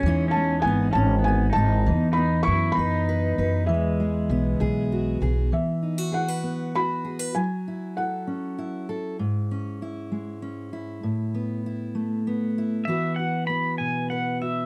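Pedal steel guitar, played with fingerpicks, sits up front in this gentle, hopeful folk piece, its clean, compressed slide tone and volume swells tracing a second line before it returns for a short solo from 12.9 seconds to the close. A felt-muted upright piano carries the melody high in its range, mellow and intimate with audible action noise and a vintage softness, until it drops away at 8.9 seconds. Underneath, a bright, full-bodied fingerpicked steel-string acoustic guitar with fresh strings plays the accompaniment throughout. A woody, growly pizzicato upright bass with transformer saturation anchors the opening until 5.5 seconds. The harmony drifts through open, colored chords such as Amaj9#11, Eadd9 and F#m7 in a lilting 6/8, and this excerpt has the dry, close sound of a 1970s-style studio recording with light reverb.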